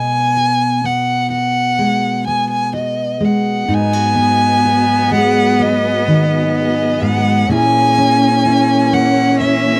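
Dry and close, with little reverb, the recording has the intimate feel of a 1970s studio session, caught here as a short cut from a longer piece. It is a reflective acoustic folk-pop ballad in a straight 4/4, built on a fingerpicked steel-string acoustic guitar whose full-bodied jumbo tone sits up front, with finger squeaks audible on the strings. Over it, from the very first moment, a single bowed violin carries the melody, warm and expressive, with soft attacks, vibrato and portamento slides that keep it close to the ear. At 3.7 seconds a bowed cello enters with a clear, focused second line, and a lush symphonic string section joins in the background with soft, sustained chords. The harmony moves from G#m7/B to G#m7 and then to A#m7b5, giving the piece a tender, inward mood.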